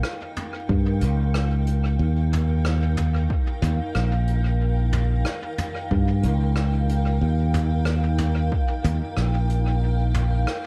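A direct, up-front fingered electric bass anchors this peaceful, hazy ambient dub excerpt at 92 BPM in Eb mixolydian, entering at 0.7 seconds alongside a punchy, overdriven electronic kick that drops out at 8.7 seconds. Around them, a distant, roomy brush kit of hi-hat, rim click and toms drifts through dub echo, while a cloudy, detuned granular pad holds a slow-blooming Eb7 chord in its own built-in reverb. The whole mix sits in an echo-heavy space dusted with vinyl crackle, with a gentle swing on the sixteenths.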